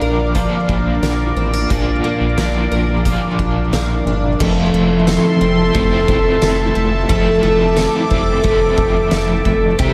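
Bathed in a moderate plate reverb, this blissful, dreamy dream pop excerpt opens on a Bb chord and moves to Fmaj7 at 4.4 seconds. A shimmering, octave-doubled twelve-string acoustic guitar picks arpeggios through analog chorus and digital delay, while a crunchy, double-tracked overdriven electric guitar adds accompaniment with tremolo and lush chorus, and a swirling, detuned analog pad holds sustained chords through phaser and chorus. A round, deep analog bass sits underneath, and an oversized, low-tuned acoustic drum kit enters at 0.4 seconds with punchy kick, fat snare, dark cymbals, hi-hat, ride, crash and tambourine in a gritty, pumping room sound.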